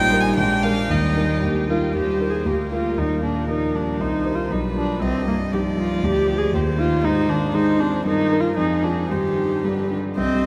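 Drenched in a vast, echoing reverb, this stormy, dramatic piano quartet movement in the classical style, cut from a longer piece, moves quickly in two. A single violin carries the melody with light vibrato, a soft attack and an airy, intimate bow, while one cello sings a rich, expressive second line with portamento from further back. Up front, a dark, mellow concert grand with deep bass and short sustain and a focused, warm viola fill out the accompaniment together.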